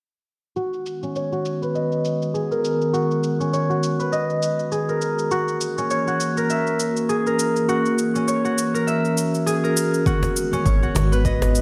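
A fingerpicked concert harp rings up front with arpeggios from 0.6 s, joined by overdriven, filtered cabasa and congas and, at 0.9 s, a warbling, nostalgic lo-fi pad of detuned sustained chords that pumps under chorus and its own reverb, while filter sweeps move across the harp, pad and hand percussion. This earthy, organic downtempo fragment moves at 101 BPM in 4/4 with a 16th-note swing, cycling from G#m7 to F#7 and back. Near the end a punchy, overdriven electronic kick enters at 10.1 s alongside a woody, close and dry cajon, and a deep, round analog bass with tube saturation lands on a low G#, all set in a moderate plate reverb with a bright 1980s-style digital sheen.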